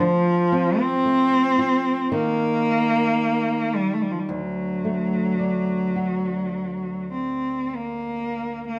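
A single bowed cello carries the melody up front, its expressive line shaded with vibrato and portamento and a distant, mournful quality, in this brief, haunting fragment of a Celtic slow air. Beneath it, a dark acoustic flamenco guitar is fingerpicked softer in the mix, moving from F through a chordless stretch at 2.1 seconds to D. The rubato pulse sits around 47-57 BPM in 4/4, captured with close, detailed microphones and light reverb.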